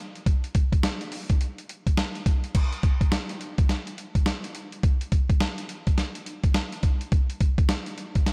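A light reverb sits around this short R&B cut, taken from a longer piece, where a gritty, compressed, sampler-style soul drum kit plays up front from 0.2 s. The mood is slick and punchy at 105 BPM in 4/4, with a 62% swing on the sixteenths giving the groove its lilt. A thumpy kick and medium-tuned snare drive the beat alongside hi-hat and crash cymbal, and the pattern moves into a new section at 2.5 s that carries through to the end.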